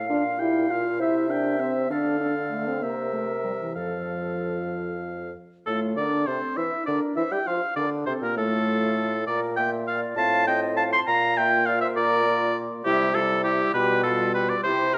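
Heard in a moderate recital-hall reverb, this cheerful, lively fragment of a quick classical-period movement for wind quintet in F major moves in 6/8 at 66 dotted-quarter beats per minute, with a pure, crisp-attacked flute carrying the melody, a clear, close-miked oboe up front on the second line, a dark clarinet in the background and a mellow French horn filling the accompaniment, and a bassoon with vibrato anchoring the bass, shifting from its opening section into a new one at 5.7 seconds.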